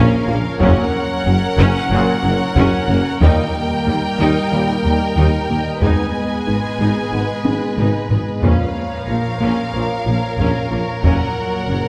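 A barely audible electronic impact opens this tense, brooding cue, a slice of a longer hybrid orchestral and electronic film score in Bb phrygian at 92 BPM in a straight 4/4. From the first moment, a lush violin section carries the melody with focused vibrato while a softer, expressive second violin line and background violas fill the middle, all under a shimmering, retro pulse-width pad with chorus and a dark, very quiet synth pluck tracing arpeggios. The low end is thick: a bright, close double bass section, a distant and very quiet cello section, and a present tuba. At 0.6 seconds a taiko ensemble struck with hard sticks enters alongside very quiet, tight French horns and trombones holding sustained chords, and the drums break into a fill at 7.4 seconds. Harmony moves through Bbm, Gb, Eb and Abm before returning to Bbm, and a wet concert hall reverb gives the whole ensemble a cavernous, sweeping space.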